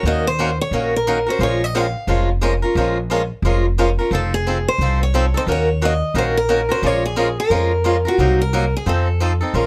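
A dry, close-miked sound frames this fiery, virtuosic jazz manouche excerpt in Bb minor at 177 BPM with a swung feel, where a bright, parlour-toned steel-string acoustic guitar picks the melody over a boxy, up-front swing guitar with audible finger squeak and a woody, thumpy pizzicato upright bass on gut strings, moving through Ebm7, Bbm7 and F7#9 before a Cm7b5 to F7 turnaround.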